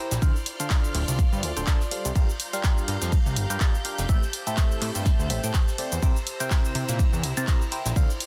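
Piano house at 124 BPM in 4/4 with a light swing on the sixteenths, this short cut from a longer piece feels bittersweet and energetic as it moves through Dm7, Gm7, Am7 and C7. A punchy, layered electronic kick sits up front, joined by an analog drum machine playing cabasa, handclaps and hi-hat, while a very quiet brush kit adds dark cymbals, ride and a medium-tuned snare in a natural studio room. A fat, saturated analog bass with a nasal, detuned sawtooth edge and a quick filter pluck drives the low end, pumping against the kick. The barking FM electric piano carries the riff with a biting, percussive attack, colored by phaser and digital delay and pumping in time. Behind it, a bright symphonic string section holds lush, bowed chords with vibrato, and an airy, breathy pad with chorus and a slow attack fills out the background, both pulsing with sidechain. The mix is dense and heavily limited, set in a small room ambience.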